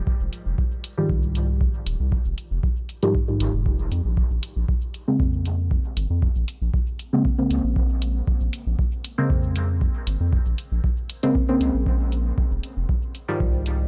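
Cavernous, hazy digital ambience surrounds this dub techno excerpt in Bb minor at 117 BPM, where mellow chord stabs with a warbling, detuned vintage tone carry chorus, phaser, dub echo and sidechain pumping through Fm9 and Bbm9, a round, nasal analog bass with tube saturation pumps underneath, an up-front electronic kick brings the weight of a large room, and a layered electronic hi-hat keeps the straight 4/4 pulse.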